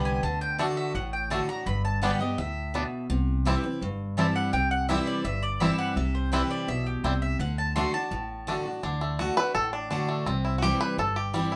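Joyful and virtuosic, this short bluegrass cut opens with a picked mandolin taking the solo, its doubled strings sounding woody as it plays stabs until 8.7 seconds. A fingerpicked banjo, twangy and percussive, carries the melody from 0.6 seconds and takes over the solo from 8.8 seconds, over a full-bodied jumbo steel-string guitar with fresh strings and a dark, thumpy pizzicato upright bass on gut strings. The banjo, guitar and mandolin sit up front, set in a moderate studio reverb, with the chords moving through D, G and C.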